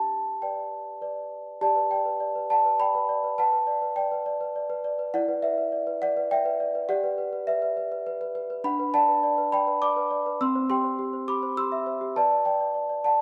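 A dark, warm production places the celesta up front in a moderate recital-hall reverb, its bell-like, delicate tone struck by hard felt hammers. This classical lullaby in G major moves at 102 BPM in a straight 3/4, the solo celesta spanning C4 to E6 across a dreamy, innocent passage cut from a longer piece. After a brief opening on G, the harmony drifts through G/B, Em7 and Bm/D before reaching C at 10.4 seconds and settling on G/B at 12.2 seconds.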